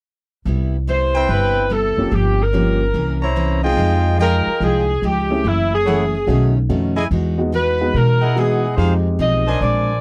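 A swung 4/4 pulse at 144 BPM drives this energetic, brassy big band swing passage, cut from a longer piece, with the upright bass and the picked steel-string acoustic guitar entering at 0.5 seconds. The pizzicato bass sits up front with a woody, growly, thumpy tone, while the bright dreadnought guitar supplies accompaniment with audible finger squeak. A tight saxophone section carries the melody from 0.9 seconds, clear and touched with vibrato, and a punchy, warm trumpet section adds up-front stabs with light vibrato. At 2.0 seconds an intimate, vintage grand piano joins the accompaniment, smooth and deep in the bass, with its action noise audible. The harmony moves from Cmaj7 through C7b9 and Fm9 to B9 and Emaj9, settling on Fm7, all captured in a dry, close 1970s-style studio sound.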